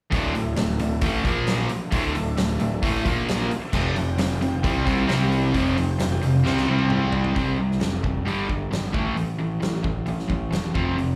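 This sounds like a live club gig heard through the venue's PA, with light reverb and the ambience of the room. It is a menacing, driving hard rock passage in D minor at 133 BPM, cut from a longer piece. A huge arena drum kit with a fat snare, punchy kick and bright cymbals drives the whole span, and a drum fill at 6.5 seconds leads into the next section. Three overdriven guitars play the riff behind it: a picked electric guitar with slapback echo, a semi-hollow guitar with a hollow-body tone, and a sludgy double-tracked guitar that also carries slapback echo. Under them, a fuzz-laden picked bass sits low and firm. A very quiet, silky analog string pad with ensemble chorus and vibrato holds sustained chords, and both the pad and the sludgy guitar drop out at 7.4 seconds as the chords move from D5, Bb5, F5 and C5 toward G5 and A5.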